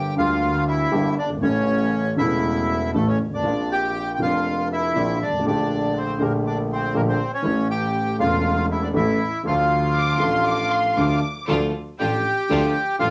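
Set in a wet studio reverb, this dramatic, passionate tango excerpt moves with a rubato feel, putting a reedy, airy bandoneon melody up front over mellow, deep-bassed grand piano accompaniment and a distant, earthy bowed double bass in the background, while a lush, woody violin section adds a brief second line from 9.9 s and a bright, close chamber string section plays stabs from 11.5 s.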